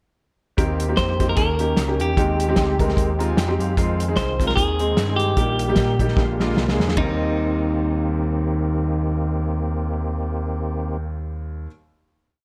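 Reverent and hopeful, this short uptempo gospel piece in Eb major at 150 BPM swings along as up-front overdriven picked bass walks with chromatic approach notes, a dark, tight soul drum kit drives a two-beat praise groove and plays a fill at 6.2 seconds before stopping at 7.1, a clear, boxy grand piano with audible action noise supplies rhythmic chords and a short fill at 3.0 seconds, a lightly overdriven percussive tonewheel organ with chorus vibrato and stopped rotary speaker holds background chords, and a bright, twangy clean electric guitar with slapback echo picks compressed song-like motifs from 1.0 seconds onward, all settling onto a final Eb6 chord in a small room.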